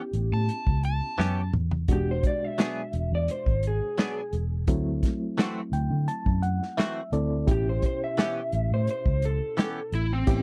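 Straight-eighth soul blues with a rollicking, laid-back mood, built on a dark, tight soul drum kit that carries a fill at 1.2 seconds and a round, foam-muted fingered bass, while a slightly broken-up electric guitar through a small old amp sings the melody with spring reverb over a reedy electric piano shimmering with fast tremolo, a bright, twangy clean guitar adds chorus-drenched stabs, and an overdriven slide guitar played with fingerpicks slips in briefly at the start and again at 9.9 seconds, all in a dry, close 1970s-style studio sound.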